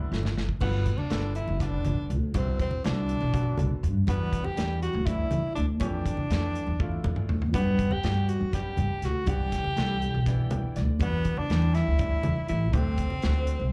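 Set in a straight 7/8, this bright, funky stretch of electric jazz fusion, heard live through a club PA, opens on a drum fill from a dark, tight-kicked acoustic kit as a smooth, vibrato-laced tenor saxophone solo with slapback echo rides over clear baby grand piano chords (also echoed, with a piano fill at 10.3 s), an up-front woody pizzicato upright bass and soft-handed congas tucked in the background, as the harmony moves from Gmaj7 through Cmaj9#11, Em9 and Fmaj13 to a closing D7sus4.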